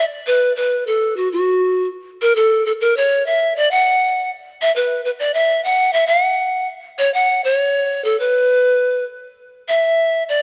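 Andean folk in an earthy, festive mood: a lone pan flute of bamboo plays in a straight 2/4 feel, its breathy, straight tone carrying a chiff on the tongued notes and rolled-off highs, sitting up front in a rough home demo mix with light small-room reverb, shifting into a new section at 9.4 seconds before this short cut from a longer piece ends at 10.4 seconds.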